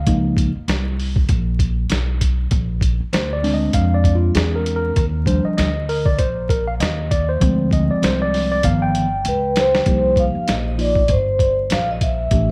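A mellow tine electric piano takes the lead over woody pizzicato upright bass and a gritty, pitched-down boom bap kit with a thumpy kick, setting a nocturnal, cool jazz-hop groove at 98 BPM in C minor with a 16th-note swing, vinyl crackle and light reverb, moving through chords from Db69 to Gaug7 until a drum fill at 8.6 seconds leads to a ringing soft-mallet vibraphone melody with slow motor vibrato, which enters at 9.3 seconds and carries on over a closing Cm7.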